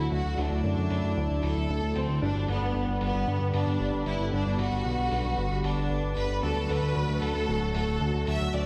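A straight 4/4 pulse at 114 BPM drives this short italo disco passage in G major, tuned slightly low at A4 = 437 Hz, with a gritty, compressed electronic hi-hat ticking very quietly in a large room from 0.4 s. Underneath, a fat analog bass sits up front, its detuned sawtooth and square-wave tones saturated and nasal, with a fast, plucky filter attack that then sustains. A bright unison pad holds sustained chords with slow attack and long release, its warbling vintage chorus carrying a filter sweep across the whole passage. Above it a rich studio violin section carries the melody, bowed with vibrato and focused yet distant, trailed by a diffuse ambient delay, while a clear electric grand piano adds stabs low in the mix, with clangy low notes and chorused unisons. The harmony moves from D to G at 2.2 s and back to D at 6.4 s, and a wet, lush hall reverb soaks the mix in a dreamy, playful and romantic haze.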